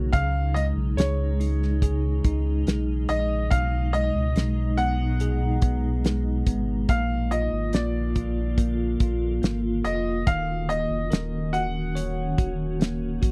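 Melancholic and emotional, this pop ballad fragment moves at 71 BPM in a straight 4/4 in Eb minor, with chords passing from Dbsus2 through Abm/Cb and Bb to Ebm7. A clear, slightly worn grand piano carries the melody in a high register with a slapback echo, over a bell-like, bright tine electric piano accompaniment and a blurred, evolving granular cloud pad that sustains the chords inside its own reverb. A round, deep sine sub bass and a damped 1970s acoustic drum kit with a fat snare and tight kick sit up front in a dry, close studio sound, the drums entering at 0.1 seconds.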